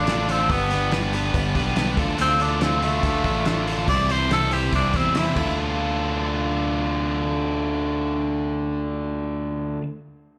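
A straight 4/4 pulse at 142 BPM drives this gritty, swaggering classic rock fragment in D dorian, heard as a live club gig through the venue's PA with small-room reverb. A raspy, close-miked tenor saxophone with vibrato, scooped notes and a slapback echo solos over G, Dm and C until 5.6 s. Beneath it, a cloth-damped, thuddy drum kit with a fat snare and dark cymbals plays until 5.5 s. A bright, tight distorted guitar and a punchy fingered bass sit up front, while a sludgy overdriven guitar lurks in the background, and the guitars and bass carry on to about 9.9 s.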